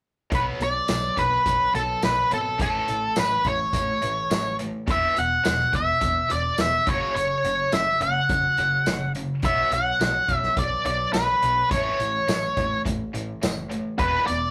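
An up-front, dark octave-fuzz lead guitar carries the melody through this gritty, brooding classic rock fragment, cut from a longer piece. Beneath it, a tight, bright, double-tracked distorted guitar picks the riff, while a round, foam-muted overdriven bass adds punch and a vintage kit with a punchy kick, medium-tuned snare, hi-hat and tambourine pumps in a small room. The rough rehearsal-room sound carries a moderate, short reverb, and the drums have a rolled-off top.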